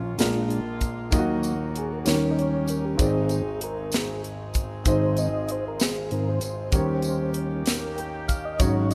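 This rough home demo carries a light reverb and audible lossy compression artefacts, framing a short slice of slow gospel in 6/8 that feels jubilant and reverent at once. A percussive tonewheel organ takes the solo from the opening second, its mellow, flute-like tone given second-harmonic percussion, chorus vibrato and a slow rotary speaker, sitting up front in the mix. Beneath it, a concert grand piano plays intimate accompaniment with deep bass and audible action noise, while a muted French horn section holds stopped, nasal, metallic chords that sound distant and roomy. From 0.2 seconds a polished, airy fusion kit drives the feel with a high-tuned snare, tight kick and hi-hat, joined by a jingly tambourine tucked into the background. The harmony moves through Bb7, Ebm and Eb7 before settling on Ab, with Eb7 returning near the end at 6.7 seconds.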